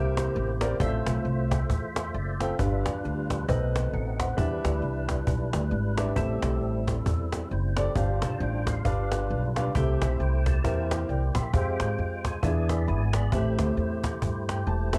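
A swung 134 BPM groove in 4/4 drives this soulful, hopeful uptempo gospel excerpt in C major, with a snappy, up-front cajon entering at 0.2 seconds under a growly, woody pizzicato upright bass, a warm upright piano with audible action noise comping through rich seventh-chord changes before a fill at 14.2 seconds, and a fat, percussive tonewheel organ holding sustained chords with key click, chorus vibrato and a slow rotary speaker, the piano, organ and cajon carrying a vintage home-cassette sound and the whole mix sitting in light reverb.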